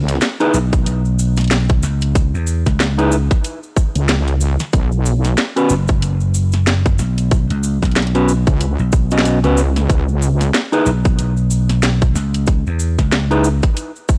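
Dry, gritty and close, this swaggering, playful glitch hop clip rides a heavy, detuned wobble bass that drops out at 10.5 seconds, alongside a growly, punchy slap bass, an overdriven electronic kick with a tight thump, a drum and bass kit of cracking snare and bright hi-hats, grainy cabasa sitting lower in the mix, and dark, clean guitar stabs, sidechain-pumped and trailing analog delay, over a C#m7 to Bsus2 sway.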